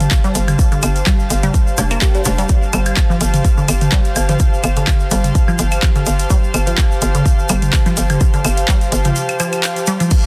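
A dense, heavily limited, dry mix opens this clinical, hypnotic stretch of minimal techno at 126 BPM in 4/4, with a slight swing on the 16ths, tuned to A4 = 435 Hz and resting on a Gsus4 chord. A punchy, layered electronic kick sits up front beside a hollow, bouncy FM bass that knocks low between F1 and G1, pumping against the kick. A house kit adds handclaps, a crash and metallic hats, while tape-warm electronic toms, woodblock and claves and a grainy, mellow tube shaker tick along in the background. A juicy, squelchy blip pluck with a resonant filter carries the riff through phaser and digital delay, over an airy, breathy chorused pad and a faint, detuned gated texture that pulses in time with the beat. The bass drops out at 9.1 seconds for a brief break from 9.2 to 10.1 seconds, and the cut ends at 10.3 seconds as part of a longer piece.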